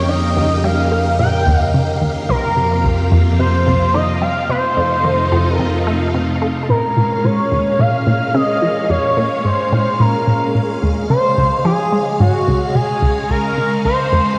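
A shimmering, nasal pulse-width lead sits up front, carrying the melody with vibrato and portamento through chorus and delay in this cosmic, expansive passage of ambient, sequencer-driven space music at 109 BPM in 4/4. Beneath it, a juicy, squelchy blip pluck repeats a low riff, its ring-modulated, resonant tone run through phaser and delay. A swirling vintage string machine holds sustained chords with ensemble chorus and phaser, while an airy, breathy wind-like noise texture hovers very quietly in the upper register. A warbling analog drone with chorus anchors the bass on F2 under Eb7, C7sus4 and F7, then stops at 6.7 s as the music settles into Bb minor over Bbm7 and Dbmaj7, with a filter sweep on the synth arpeggio sound running through both halves. A wet concert-hall reverb with a 2.2-second decay surrounds this short cut from a longer piece.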